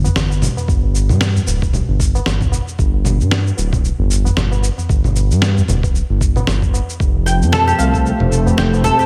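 Light reverb and a digital ambience give this short organic downtempo excerpt a soft, airy space, with a hypnotic, meditative mood over a swung 4/4 groove. A smooth synth bass sits up front from the start, its tube saturation and sidechain pumping giving it a gently breathing weight. Beneath it, a low-tuned tabla with a short ring rings quietly in a small room, while gritty, tape-toned electronic shaker, fat snare and congas set the pulse, joined at 0.7 s by a thumpy, compressed electronic kick. The harmony moves from G5 to Fadd9, and at 7.2 s a mellow, detuned analog pad enters with chorus, vintage 12-bit sampler grit and its own sidechain pumping. At 7.3 s a woody, deep oud, plectrum-plucked on fretless double strings, arrives up front with arpeggios trailed by a diffuse ambient delay.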